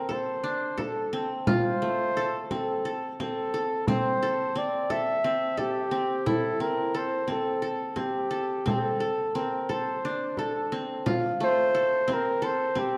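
Hypnotic and restless, this short fragment of contemporary chamber music moves in an uneven 7/8 at 175 BPM, with a mellow, classical-style flugelhorn singing an up-front solo melody over bright-edged, triple-stringed qanun arpeggios played with fingerpicks, while a small frame drum, close and dry under soft hands, joins at 0.1 s as the harmony shifts from Dm7 to Am and back, all set in a dark production with a lingering recital-hall reverb.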